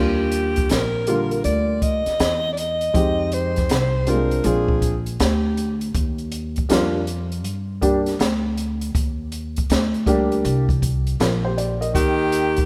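Jazz-hop in Eb major at 80 BPM with a swung 16th feel, this smooth, warm fragment from a longer piece sets a close, whispered alto saxophone with vibrato and scooped notes over a dark, short-sustained baby grand piano moving through Ebmaj7, Fm7 and Bb7, a woody, bright pizzicato upright bass and an open acoustic drum kit with a high-tuned snare and boomy kick entering at 0.3 seconds, before the alto stops at 5.8 seconds and returns near the end alongside a breathy tenor saxophone from 11.9 seconds, all in a rough home-demo mix with light studio reverb.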